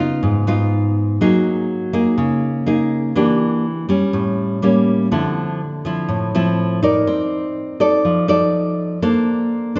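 A lone nylon-string guitar, fingerpicked and up front with a full-bodied, deep classical tone, carries this sophisticated, romantic bossa nova excerpt at 123 BPM in a straight 4/4. Rich extended harmonies unfold from an opening Db9 through Em7b5, A7b9 and Dm9 before settling on Bbmaj9 near 9.0 seconds. The guitar rings in a church or concert hall with a moderate 2.2-second reverb tail, and the recording's rolled-off top end gives it a soft, rounded sheen.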